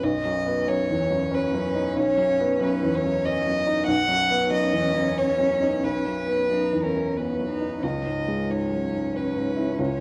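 From the very start, a woody, slightly detuned upright piano with audible action noise, a rich, floating solo violin singing the melody with a soft sul tasto touch, and a dark, vibrato-shaded solo cello on a second line in the background open this tender, hopeful neoclassical excerpt in a rubato three-four, its Badd9 harmony moving to C#madd9 at 7.8 seconds within a lingering recital-hall reverb.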